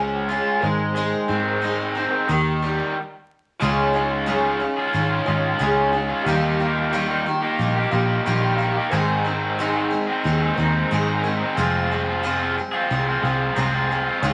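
A reflective, dusty rock excerpt in F minor at 90 BPM opens with an up-front, double-tracked garage guitar riff over a shimmering, octave-doubled twelve-string acoustic, a round, foam-muted fingered bass and a gritty reed electric piano with fast tremolo sitting in the background, all through wet studio reverb and vinyl crackle, pausing in a brief stop from 2.9 to 3.6 seconds before moving through Dbadd9, Ebadd9 and Abadd9 to Fmadd9, with electric piano fills at 7.6 and 12.2 seconds.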